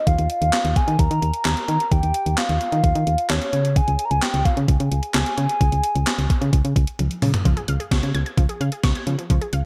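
Nostalgic and wistful, this short synth-pop passage, cut from a longer piece, moves in a straight 4/4 over a gated 80s digital drum machine whose thumpy kick, handclaps, hi-hat, toms and gated-reverb snare sit up front with a tape-tinged, sampler-style character. A solid FM bass, punchy, round and dark with a fast attack that then decays, runs alongside the drums from the opening moments to the end at 9.6 seconds. Over them, a hollow, woody synth lead with a clarinet-like voice carries the melody from the start, its soft, sustained square-and-triangle tone warbling with vibrato and thickened by chorus, delay and a sub octave. The lead stops at 7.0 seconds as the drum machine plays a fill, and at 7.5 seconds the harmony settles from Ebsus2 and Db5 onto Db. There a quieter unison pluck enters with lush, detuned sawtooth arpeggios, its wave-folded, ring-modulated edges echoed by delay, all within a dry sound.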